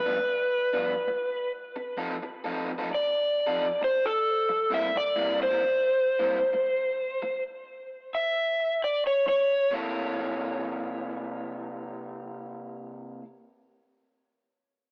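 Blues in C mixolydian at a laid-back, soulful 88 BPM with a swung 4/4 feel, where a dark, overdriven slide guitar sits up front with tape echo, playing a solo melody that breaks off at 7.0 seconds and ends at 9.7 seconds, while a bright, crunchy picked guitar with spring reverb carries the riff until 13.2 seconds over chords moving from G7 and F7 to C7, all captured with a rough rehearsal-room sound and a small-speaker character in a short cut from a longer piece.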